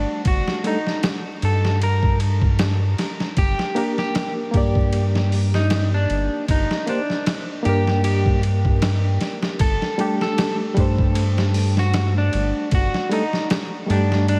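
Trip hop at 77 BPM in G harmonic minor, hypnotic and brooding, with a light 16th-note swing and a dreamy mix soaked in huge ambient reverb and vinyl crackle. A clean, picked electric guitar carries the melody through tape echo over a reedy, lightly overdriven electric piano pulsing with tremolo and harmonic tremolo, while a round, deep, detuned analog bass sits up front. A gritty, pitched-down sampler-style kit with a thumpy kick, snare, hi-hat and ride cymbal enters at 0.2 s, and the harmony moves from Dsus4/G to Gm at 3.4 s before returning to Dsus4/G at 9.6 s.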